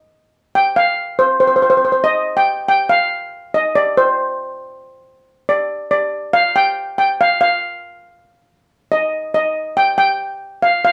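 A sunny, carefree calypso excerpt in a straight four, carried by a lone steel pan playing lead between C5 and G5 throughout its 10.9 seconds, its metallic, shimmering tone struck with hard rubber sticks and set up front in a boxy small room with moderate studio reverb, moving from an opening passage into a new section at 2.0 seconds.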